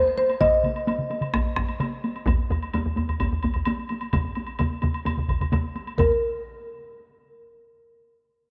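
A dark, smooth marimba played with medium mallets leads this driving, ceremonial Japanese taiko piece, its up-front melody carrying a slapback echo through the opening 1.8 seconds and returning briefly at 6.0 seconds. Beneath it, two taiko ensembles struck with hard and heavy sticks, a woody woodblock in a live room, and close, dry solo taiko drums hold a straight 4/4 feel, with a second heavy-sticked solo taiko part joining at 2.3 seconds. A moderate plate reverb surrounds the mix in this excerpt from a longer work.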